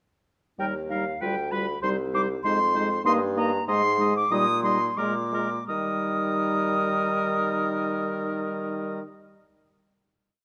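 A pure, crisp-attacked silver flute carries the melody up front in this lively, spirited classical-period wind quintet movement in 2/4, with a lightly vibrato oboe on a second line of repeated notes and sustained chords, a soft-attacked, roomy French horn and a mellow clarinet in the background filling out the accompaniment, and a bassoon placing bass notes on the beats, all captured by close, detailed microphones in a moderate stage reverb as the piece slows from 2.4 to 5.7 seconds before settling on a final held chord.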